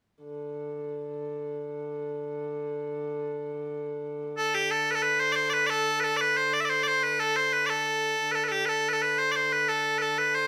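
Captured live in one room with moderate large-studio reverb, this short excerpt of a medieval dance in 6/8 at 120 BPM (dotted quarters) has an ancient, festive mood. A dark, woody hurdy-gurdy opens alone at 0.2 seconds, holding a wheel-bowed drone on D3 beneath the room's ambience. At 4.4 seconds, loud bagpipes enter up front with a bright, piercing, continuous solo melody ranging from G4 to E5, carrying on over the drone until the cut at 10.5 seconds.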